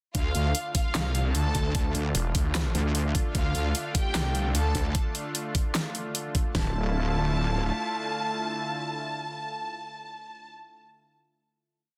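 A swung half-time beat of overdriven, knocking kick, huge snare, bright hats and claps drives this heavy, aggressive wobble dubstep piece, where a saturated wobble bass with changing wobble speed and a growling, distorted saw bass entering at 0.9 s churn beneath a rich violin section with vibrato, playing a repeating riff in octaves through gritty 12-bit sampling and digital delay, over a thick, warbling pad that pumps with the sidechain and holds a final chord from 6.5 s.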